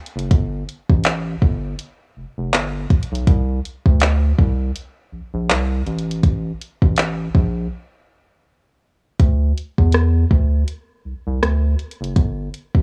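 A soft-kicked electronic R&B drum kit of handclaps, hi-hat and rim click opens at 0.1 s, joined a moment later by a round, deep, dark analog bass with a fast-attack filter pluck, both up front in this moody, longing contemporary R&B excerpt at 81 BPM with a lightly swung 16th feel, pausing for a break at 7.7 s before a new section at 9.2 s, all coloured by worn cassette-tape warble, drifting pitch and a dry small-room ambience.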